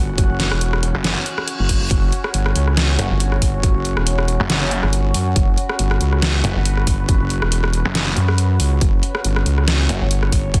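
A half-time groove with swung sixteenths drives this heavy, chaotic wobble dubstep excerpt, as a punchy electronic kick and an up-front dubstep kit of hi-hat, rim click and a deep, soft-clipped snare enter at 0.2 seconds, both re-recorded in a large room. A saturated sawtooth wobble bass with chorus and overdrive is joined from 0.9 seconds by a growling, detuned saw bass that snarls through distortion, while a dark, morphing wavetable pad warbles behind them with phaser, its own reverb and sidechain pumping. A brief electronic reverse cymbal appears at 1.3 seconds, all inside a dense, heavily limited, dry mix.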